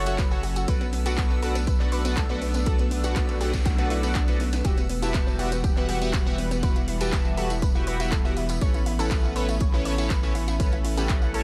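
A straight 4/4 pulse at 121 BPM drives this emotional progressive house excerpt in E dorian. It is built on a punchy, overdriven electronic kick up front, a house kit of handclaps, hi-hat and cracking snare, a jingly tambourine in the background, and a drum fill at 4.4 seconds. A deep, saturated sine sub bass and a lush, detuned supersaw pad pump beneath chords moving from F#m7 through Bm7 and Emadd9 to Aadd9, while a round analog pluck plays arpeggios with tape echo, a glossy chorused polysynth adds phased stabs, a very quiet, dreamy backwards swelling texture sits high above, and a faint noise sweep passes between 3.3 and 4.6 seconds in a dark mix with light reverb.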